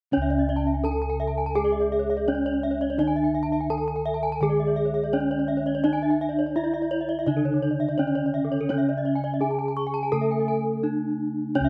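Cut from a longer Balinese gamelan piece in C# pelog at 84 BPM, this brilliant, shimmering passage opens at 0.1 s with an up-front bronze metallophone melody struck with a wooden mallet, its paired tuning producing beating shimmer in a boxy small-room tone, over a soft, airy metallophone accompaniment played with padded disc mallets, round, mellow bossed gongs carrying the bass, and a dark, smooth horn-mallet metallophone spinning high arpeggios with slapback echo, joined at 0.3 s by a second wooden-mallet arpeggio line that also carries slapback echo, all in an outdoor setting with light reverb.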